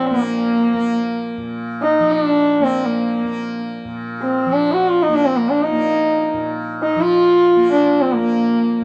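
This devotional, meditative fragment of Hindustani classical music lasts just 8.8 seconds, cut from a longer performance. A single bowed sarangi carries the melody up front, its dark, woody voice gliding between notes with portamento and a light vibrato, while its sympathetic strings ring beneath the line. Behind it, a softly plucked tanpura holds a quieter drone, its bright, buzzing tone shimmering steadily under the melody. Both parts sound from the first moment to the last, and the sarangi sits well above the drone in level. The sound is dry and close, like a 1970s studio session, with a touch of small-room reverb.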